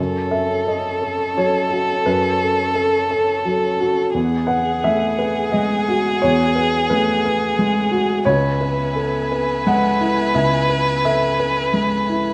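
Set in a moderate studio reverb, this 12.3-second neoclassical excerpt in F# dorian moves at a rubato 87 BPM in 3/4, where an intimate, natural grand piano sits up front with its action noise audible alongside a focused, bowed solo violin whose vibrato-laden melody sounds longing and reflective, while a lush symphonic string section holds sustained chords in the background over an F#m, Eadd9 and C#m7 progression.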